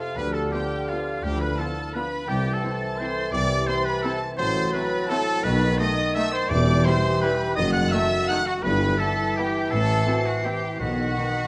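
Punchy trumpet stabs cut through this dark, sweeping excerpt of an orchestral ballroom waltz in 3/4 at 169 BPM, played with rubato and uneven beats, as veiled con sordino violins carry the melody over a very quiet second violin line, a clear oboe, and a mellow, hollow silver flute, while bassoon and viola accompaniment, sustained chords from a dark horn section and a vintage-toned trombone section, ringing thumb-plucked harp arpeggios, and a bass of muted cellos, distant double basses and a roomy tuba move from A minor into E minor at 4.4 s, with a round, soft-mallet timpani note at 6.5 s, all in a moderate recital-hall reverb.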